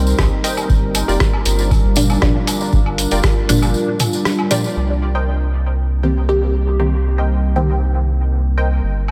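A straight 4/4 pulse at 118 BPM drives this cavernous, hypnotic dub techno fragment in C minor, cut from a longer piece, with a deep electronic kick drum that carries a large-room character until 3.3 seconds, joined by a muffled, pitched-down sampler-style kit of low-passed hi-hat and rim click soaked in dub echo. A jingly acoustic tambourine and background electronic woodblock and toms, tape-warm and treated with sidechain pumping and echo, fill out the percussion through the first half. Underneath, a soft, round sub bass sits up front and pumps against the beat, while a full-bodied, moody pad of detuned sawtooth and sine layers holds sustained chords moving from Cm7 to Gm7 and back, its filter sweeping from 4.8 seconds to the end. Two filtered chord stabs weave through the mix: a higher riff with chorus and dub echo, and a lower, nasal, mellow stab line with a moving notch, colored by phaser, that enters at 2.0 seconds. 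The whole mix is dreamy and steeped in a lush hall reverb, leaving the pad, bass and stabs to float on after the drums fall away.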